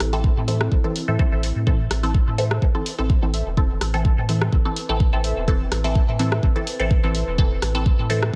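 Bathed in light digital reverb, this short, hypnotic dub techno cut at 126 BPM in A minor sets an up-front, layered electronic kick against the dry hi-hat and rim clicks of a punchy analog drum machine, while a round sine sub bass, muted detuned chord stabs treated with phaser and dub echo, a moody chorused analog pad lingering in the background and warbling, nostalgic lo-fi synth keys entering at 0.5 seconds with their own chorus and echo all breathe with sidechain pumping over a single meditative Am chord.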